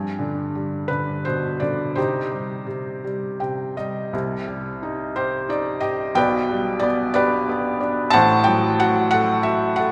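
Classical solo piano in a lyrical, reflective and dark mood, moving slowly in 6/8 at 54-62 BPM with a free, rubato feel in C harmonic minor. A felt-muted upright piano carries the whole passage alone, its soft, mellow tone sitting up front and intimate, with the thin felt and audible action noise lending a close, private character. It ranges from A1 to A5, and around 3.1 to 4.1 seconds a brief felt piano fill bridges into a restatement of the opening phrase. The harmony passes from G to C minor, then to G over B and on to A minor six near the close. A wet church reverb with a 3.2-second decay surrounds the instrument, placing it in a resonant hall or church space. This short passage of about 10 seconds is cut from a longer piece.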